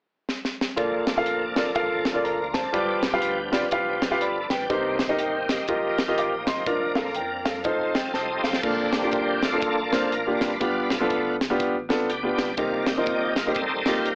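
A swung 4/4 groove at 122 BPM drives this reverent, jubilant uptempo gospel excerpt in Bb major, opening with a drum fill from a crisp, up-front fusion kit with a high-tuned snare and tight kick before grand piano, tonewheel organ and a deep sine sub bass with octave, sitting in the background, enter at 0.8 seconds over a Bbmaj7, G7, Cm7, F9sus4 progression. The clear, intimate piano carries audible action noise and long sustain, while the shouting, lightly overdriven organ with key click, chorus vibrato and slow rotary speaker holds sustained chords, fills at 7.9 seconds, then takes a solo from 8.6 seconds to the end. The dry sound is worn and warbling, with cassette-like pitch drift and an AM radio cast.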